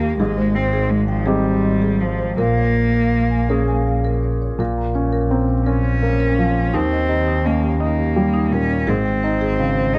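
A dark, warm production with little reverb frames this melancholic, fragile neoclassical fragment in Bb dorian, unfolding in a rubato 6/8 at 56 BPM. An intimate, felt-muted upright piano carries the accompaniment up front beside a single bowed cello playing sul tasto with light vibrato as the second line, while a bowed double bass supplies a pure, floating low end and a woody marimba sits in the background with arpeggios and a slapback echo. The harmony drifts from Abmaj7 through Bbm7 and Bbm to Eb, settling back on Abmaj7 at 8.9 seconds.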